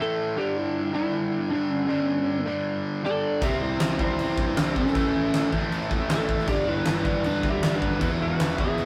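Powerful and energetic, this hard rock excerpt charges along at 157 BPM in straight 4/4, opening with a twangy, compressed, slightly broken-up lead guitar melody over an up-front stack guitar riff that sounds bright and overdriven. At 3.1 seconds a dark, biting lead guitar adds a second line, and from 3.4 seconds a scooped high-gain guitar and a fuzz-laden, warm picked bass join in the background, while a huge arena drum kit with a fat snare and punchy kick sits up front. The chords move from G5 to C, then through A and G to E, captured as a rough rehearsal-room recording with light reverb.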